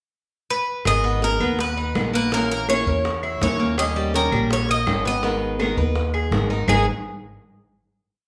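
Warm and nostalgic, this short Cuban son and guajira piece moves at 165 BPM in a straight 4/4, set in G# harmonic minor. A bright, metallic Cuban tres with picked double strings opens alone on a pickup at 0.5 seconds, then carries an up-front, motif-based melody built in sentence-like phrases. From 0.9 seconds the band joins: a second tres spins an arpeggiated guajeo, a fingerpicked flamenco guitar strums with muted slaps, and a thumpy, woody upright bass plays a pizzicato tumbao that anticipates the chords as they move through G#madd9, A#dim and D#7. In the background, tight, high-tuned bongos keep steady eighths and a hand bell, while woody claves tap out a two-bar time line. The band sounds like it is playing live in one room, washed in a large studio reverb, before the piece settles on a closing G#5 chord at 6.7 seconds.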